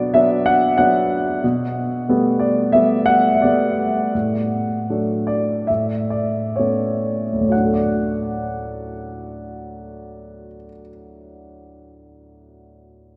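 Sunny and hopeful, this lyrical classical passage for solo grand piano moves at an unhurried, rubato pace, easing into a slower tempo from 1.4 to 7.5 seconds before a new section opens. The piano sits up front with a clear, present tone and long sustain, its chords blooming into a wet cathedral reverb with a 4.5-second decay that evokes a church or concert hall. Cut from a longer piece, it ends at 13.2 seconds.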